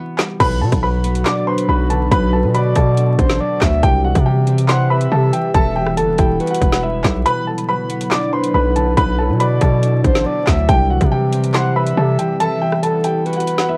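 A fingerpicked concert harp rings softly in the background before a hard-clipped drill kit with a woody snare, metallic hats, handclaps, rim clicks and crash arrives, setting a cold, dark half-time groove at 140 BPM in B phrygian over a Bm, C and Emadd9 cycle. Up front, a mellow, worn baby grand piano carries the melody through cassette tape and analog delay, its action noise audible. A heavy, distorted 808-style bass drives underneath, while a warbling, nostalgic pad holds sustained chords and a breathy, flute-like synth lead with vibrato adds a hazy second line, all under vinyl crackle, with a brief break at 7.3 seconds and the kick dropping out from 12.4 seconds in this lo-fi home-recorded excerpt.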